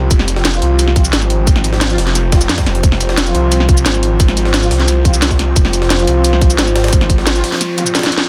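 A snarling, distorted saw bass growls up front over a metallic, inharmonic drone in the background and a warbling lo-fi pad, both pumping, as this dark, tense 176 BPM technical drum and bass excerpt in F minor drives on a tight electronic kick, a cracking snare with metallic hats and cabasa, a faint gritty jungle-style kit, soft brass stabs with delay entering at 0.5 s, and a noise sweep and zap from 7.4 s leading into a drum fill at 7.9 s.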